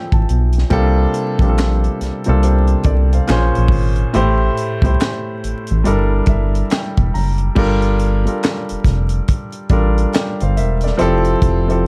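R&B and neo-soul in G dorian at a slow 70 BPM with a 16th-note swing, this sultry, soulful passage from a longer piece has a polished grand piano that plays fills at 0.0 and 5.8 seconds and sustains long, rich chords such as Fmaj9, C13sus4 and Gm69. A rubbery, hollow square-wave bass with a fast attack and a filter pluck sits up front beside a tight funk kit of kick, high-tuned snare, hi-hat, handclaps and crash, which sounds natural, as if in a small room. The mix is dry and dark, with vinyl crackle, and shifts to a Gm9 passage at 7.6 seconds before returning to Fmaj9.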